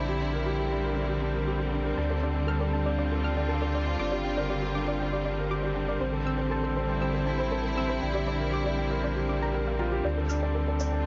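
A lush, up-front studio string section carries this moving, melancholic piano and strings electronica, holding sustained bowed chords with vibrato under a halo of shimmer reverb. A dark baby grand piano plays a mellow riff with long sustain, its notes trailing into digital delay and shimmer, while a deep, round sine sub bass sits underneath. At 2.0 seconds a soft, gently nasal pluck joins in the background, playing chorused arpeggios in a high register that are also washed in delay and shimmer. The chords move through Bb6, Dm, Gm7 and Am before returning. A short build-up begins at 10.0 seconds, and an overdriven electronic shaker slips in at 10.3 seconds. Cut from a longer piece, the recording has a light reverb and a rolled-off top end.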